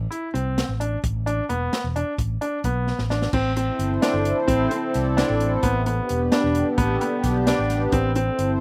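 A brilliant, up-front grand piano spins arpeggios through this short cut from a longer progressive instrumental. Its polished tone carries long sustain and audible action noise close to the ear. Beneath it, a round, amped fretless electric bass holds the low end. An open jazz kit with dark cymbals, a high-tuned snare and a boomy kick drives the uneven 5/8 pulse, and a drum fill at 2.9 seconds marks the turn into the second section. At 3.7 seconds a sweeping resonant pad enters: a full-bodied, evolving blend of sawtooth and sine with a sub octave, slow attack, a filter swell, chorus and slapback echo. The sound is dry and close, with little reverb, and the mood is intricate and tense.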